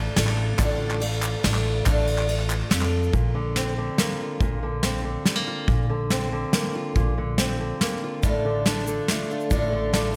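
In a straight 3/4 at 141 BPM, this yearning, wistful indie folk piece rests on airy brushed drums up front and woody pizzicato upright bass in light reverb. A bright, shimmering twelve-string guitar with slapback echo, crisp group handclaps and a grainy egg shaker open over Dm/A, until a fingerpicked steel-string guitar, also echoed, takes over on Bbadd9 at 3.1 seconds, before the twelve-string and shaker return at 8.2 seconds as the harmony goes back to Dm/A.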